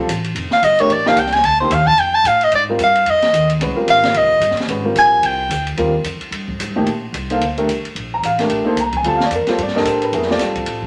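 A bright soprano saxophone takes the lead in this short cut from a longer modal jazz piece, playing an up-front solo with vibrato, subtone and scooped notes between 0.5 and 5.7 seconds. The mood is open and spiritual, moving at a brisk 221 BPM in 4/4 with a swung eighth-note feel. A smooth, vintage grand piano with long sustain also sits up front as accompaniment, voicing chords that move from Bbmaj7 to Abmaj9 and settle on Bbmaj9 at 6.9 seconds. Beneath it, a woody, dark pizzicato upright bass with steel strings holds the low end, while an acoustic drum kit with dark cymbals, a high-tuned snare and a boomy kick works across hi-hat, ride, snare and kick in a small, natural room. The whole ensemble sits in a wet club reverb, and the passage repeats its opening section after the saxophone falls away, with piano, bass and drums carrying on to the end at 10.9 seconds.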